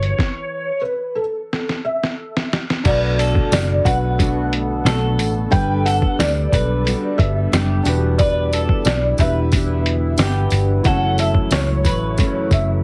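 Hazy and mellow, this indie and bedroom pop passage moves at 90 BPM in B minor and is cut from a longer piece. A felt-muted upright piano carries the melody, its thick-felted, intimate tone softened by ensemble chorus, slapback echo and plate reverb, with the action noise audible. Beneath it sit a fingerpicked nylon-string guitar with a full-bodied classical depth and a gritty, barky overdriven tine electric piano through a combo amp, both in the background. A round, foam-muted electric bass and a pitched-down, muffled sampler-style drum kit with a thumpy kick sit up front. After a stop and a drum fill, the second section arrives at 2.9 seconds on Bm7, bringing a slightly broken-up electric guitar line through a small old amp, a close, jingly tambourine, and from 3.7 seconds a warbling, detuned tape-like pad, as the chords pass through Gmaj7, Em7 and F#m7. The whole mix has a heavily compressed, radio-like sound with light reverb.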